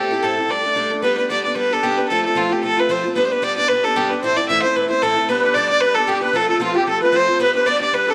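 Swinging along at 226 BPM in 4/4, this rollicking, bright celtic folk fragment in G mixolydian puts a rich, focused solo fiddle with light vibrato and tape echo up front over a boxy, fresh-stringed parlour guitar with audible finger squeak, while a reedy, shimmering musette accordion joins in the background at 5.3 seconds, all set in a moderate echo-chamber reverb.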